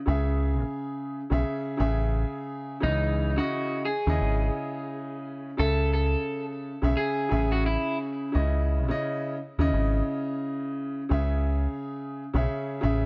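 A light small-room reverb frames this tough, reflective boom-bap hip-hop excerpt in C# minor at a swung 87 BPM, where a mellow, boxy grand piano with long sustain and cassette-tape filtering moves between Amaj7 and C#madd9 over a round, deep picked electric bass up front, while a slightly broken-up electric guitar melody, filtered and trailed by delay, enters at 2.8 seconds and stops at 8.0 seconds.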